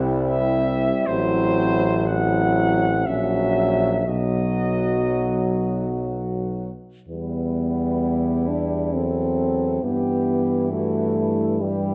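A dark, warm production places this brass band in a moderate recital hall, where the reverb gives the sound a gentle, roomy glow. It is a solemn, yearning hymn-like classical fragment in E minor and 3/4, moving with rubato at roughly 57-70 BPM. A distant flugelhorn carries the melody from 0.2 s, its light vibrato floating above a mellow, vintage-toned French horn section that sings a second line in the background. A punchy euphonium with a smooth top and a close-miked trombone, both with light vibrato, fill out the accompaniment, while a clear tuba sits up front on the bass. The harmony passes from C through F#m7b5/A and F#7/A# to B, then settles on Em at 7.1 s before moving to Em/G at 9.8 s.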